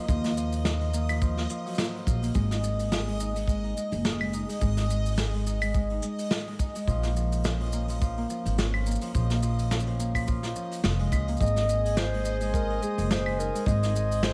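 A woody, up-front pizzicato upright bass anchors this delicate, playful folktronica piece with a swung feel. It is joined by a fingerpicked Celtic harp ringing through tape echo, a dry, tight kick, a brushed jazz kit with claves, hi-hat, shaker and snare, and a dreamy reversed texture swelling in the background. A mellow solo clarinet with tape echo and a reedy, breathing pedal harmonium then join them at 11.4 s, all over a bed of vinyl crackle.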